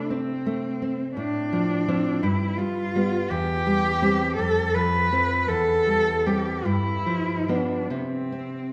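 A bowed cello and a fingerpicked nylon-string guitar begin together in this elegiac, melancholic romantic duo, the cello singing the melody with vibrato and portamento while the full-bodied classical guitar lays down a deep accompaniment. The pace is slow and rubato in 6/8, around 47-57 BPM counted in dotted quarters, in C major with tuning at A4 = 444 Hz, moving through chords such as Am/C, F/A, G and C/E before arriving at G7. A wet concert hall reverb gives the warm, expressive playing a long, spacious tail across this short excerpt, which is cut from a longer piece.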